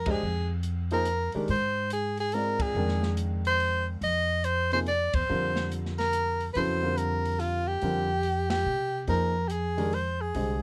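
Hypnotic and intense, this modal jazz excerpt in F dorian swings along in 3/4 at 142 BPM, with a clear, up-front soprano saxophone carrying the melody with vibrato and scooped notes over woody pizzicato upright bass, an intimate grand piano whose action noise is audible, and a dark, smooth drum kit with a boomy kick, ride, hi-hat and snare, all captured closely with little reverb as the band hits accents at 0.0, 2.5 and 5.1 seconds across Fm7 and C7 chords.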